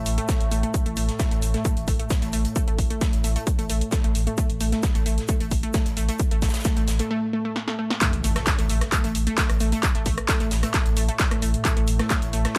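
This dark, intense stretch of driving peak-time techno, cut from a longer piece, opens on a lush, detuned sawtooth pluck riff with tube saturation and tape echo, a thick, overdriven sub bass and a moody, wave-folded pad drone with chorus in the background, each pumping to the sidechain; a tape-warm analog drum machine with punchy snare, claps, rim clicks and hats then enters together with a distant big-room acoustic kit of hi-hat, shaker and snare, a heavy overdriven kick lands up front just after, and following a brief break and drum fill, a very quiet electronic impact marks the drop at 8.0 seconds.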